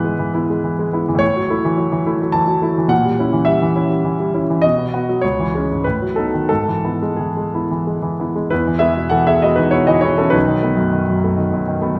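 A clear concert grand piano carries this romantic character piece alone, its deep bass and natural tone sitting up front even as a wet recital hall reverb places the listener further back in the room. In E major and 3/4, the music moves with a passionate, lyrical rubato between 87 and 108 BPM, its harmony passing from E/G# through a diminished chord at 2.9 seconds toward B and C#m before settling back home. A fresh statement of the opening idea begins at 8.5 seconds, reaching B7 at 10.4 seconds before this short extract from a longer piece breaks off at 12.0 seconds.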